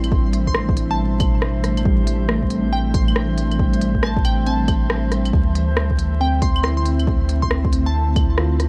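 A ghostly, nocturnal future garage excerpt opens with muted, felt-like synth keys, an ethereal pad, a soft dub sub bass, an organic electronic drum kit and a faint glass-harmonics texture all sounding from the start, in A minor at 138 BPM with a 16th-note swing. A deep electronic kick enters at 0.1 seconds beside the round, up-front sub bass, while the kit adds smooth hats, claves and rim clicks. The intimate, dark keys carry chorus, tape echo and sidechain pumping, with a low-pass filter sweep running across their whole length, and the airy pad breathes under ensemble chorus, its own reverb and the same pumping. From 0.5 seconds a crystalline wavetable pluck plays the melody high between G5 and C6, bright and coloured by ring modulation, chorus and tape echo, above the calm drifting overtones of the quiet glass texture. Vinyl crackle hangs over the harmony as it moves from Am7 to D7sus2 at 5.3 seconds.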